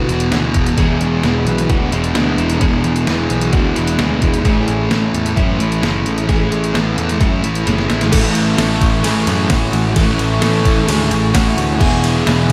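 A wistful, hazy slice of shoegaze and dream pop rock at 131 BPM, built on an up-front, thick fuzz guitar riff with lush chorus, a growly electric bass and a thumpy, overdriven 8-bit drum machine that hits a fill at 7.7 seconds, all moving through E7 and Amaj7. Behind them, a boxy, shimmering twelve-string acoustic picks octave-doubled arpeggios through subtle chorus and analog delay, an overdriven semi-hollow guitar with reverse reverb plays a riff until 8.1 seconds, and then a dark, double-tracked electric guitar riff takes over. From 8.6 seconds a warbling, lo-fi tape-like pad sustains nostalgic chords, and the whole piece sits in a moderate recital hall reverb.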